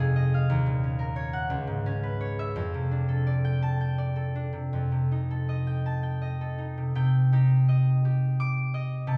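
In 6/8 at roughly 52-61 BPM counted in dotted quarters, this short classical excerpt for solo concert harp moves with a free, rubato feel. The mood is wistful and gentle, set in C dorian. The fingerpicked harp sounds bright and ringing, sitting up front, and spans a broad range from Db2 to D6 across the full 9.2 seconds. The harmony drifts through Fm7, Ebm7 and Dbm7 into a lingering F69 and F9, then turns toward a new passage at 7.0 seconds that settles on Cmadd9. A generous recital hall reverb surrounds the instrument, lending each plucked note a soft, airy halo.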